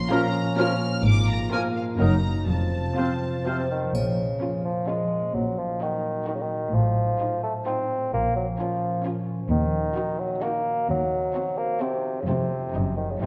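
A playful, whimsical cinematic film cue in Bb minor at 129 BPM in 3/4, this quirky, mischievous passage sets a rich, sul tasto violin section melody over bright, ringing concert harp arpeggios, with a woody, distant second violin section, an airy flute section, an oboe and a very quiet clarinet adding second lines while a warm French horn section holds chords until 3.7 s, an up-front vintage bassoon and a close, intimate viola section accompany, cello and double bass sections enter on the bass at 1.1 s, a triangle sounds briefly at 3.9 s, and a wet scoring-stage reverb surrounds the whole dark production.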